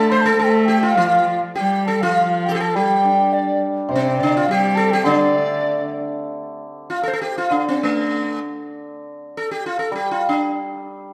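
Chinese traditional chamber music in the D yu mode, graceful and tender and moving with a rubato feel at 95-106 BPM in 2/4, where a bright, buzzing sitar with sympathetic strings carries the melody over a shimmering, ringing hammered dulcimer, while a clear, focused bowed cello and an airy, hollow large dizi with vibrato weave second lines until about 6 s, the ensemble set in a moderate stage reverb.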